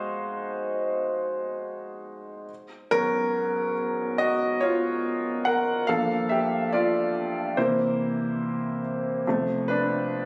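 A lone baby grand piano opens this smooth, soulful R&B fragment, taken from a longer piece, sounding a G#7 chord at a relaxed 71 BPM in 4/4 with a gentle swing on the sixteenths. The piano is clear and natural, sitting up front with a long sustain that lets each chord ring, and it ranges from F2 up to F#5. At 2.5 seconds the music moves into a new section where the piano carries on solo, drifting through G#m9 and Gm9 before a C7 at 7.6 seconds resolves to F6 near the end. The rich extended harmonies give the passage a late-night, soulful glow. Captured on a phone in the room, the sound carries the ambience of a small club.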